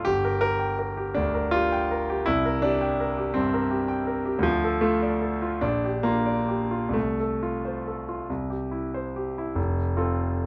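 A dark, warm production with light reverb frames a single concert grand piano that sits up front, its tone clear and polished, with a deep bass and a short sustain. This is a romantic classical character piece for solo piano in F major and 6/8, taken from a longer work, moving slowly at roughly 42-58 BPM counted in dotted quarters with a flexible, rubato feel. The mood is lyrical and warm, and the piano spans a range from F1 up to G5 across the 10.5 seconds it plays. The harmony opens on Gm, passes through C5, Dm and Gm7/Bb, then settles onto F/C and C before arriving home on F at 9.6 seconds, closing the opening section. The piano's present, close-up sound gives every chord change a distinct, intimate weight.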